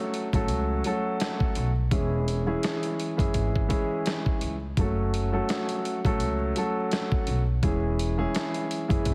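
Boom-bap hip-hop with a reflective, dark mood and a lazy swing, cut from a longer piece and moving between F#m and C#m/E. A dark, mellow baby grand piano sits up front through a cassette-tape haze and filtering, joined at 0.1 seconds by a gritty, compressed sampler-style drum kit with a thumpy kick and medium-tuned snare, and at 0.3 seconds by a woody pizzicato upright bass. Light reverb and small room ambience frame a heavily compressed radio sound dusted with vinyl crackle.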